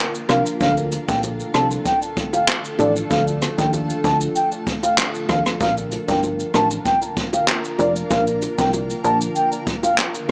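A cloudy, evolving granular pad opens this sunny, summery dancehall excerpt, its blurred chords pumping under built-in reverb. By 0.3 seconds the rest of the band has joined: an acoustic brush kit played up front with a boomy kick, hi-hat, rim click, handclaps and shaker, joined by round, low-tuned bongos sitting in the background. A punchy, funky analog bass supplies the low end with its fast-attack sawtooth and pulse-wave pluck, while a soft, dark pluck with chorus and tape echo fills in the accompaniment. Over the top, a mellow baroque flute carries the melody with a pure, woody tone, tongued notes and vibrato, trailed by tape echo. At a straight 96 BPM in Bb major, the harmony moves from Bb to D minor and back to Bb at 5.6 seconds, and the echo-heavy mix has a small-speaker character.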